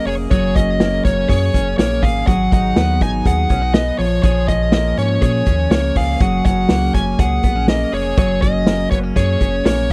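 A twangy twelve-string electric guitar with subtle chorus rings out in arpeggios alongside a smooth overdriven lead guitar carrying the melody from the start of this nostalgic, bright jangly indie pop excerpt in F# major at 122 BPM, joined by a deep, full sine-like sub bass with octave and a punchy vintage acoustic drum kit with a medium-tuned snare and rolled-off top, all in a dry mix moving through F#add9, G#m7 and A#m7.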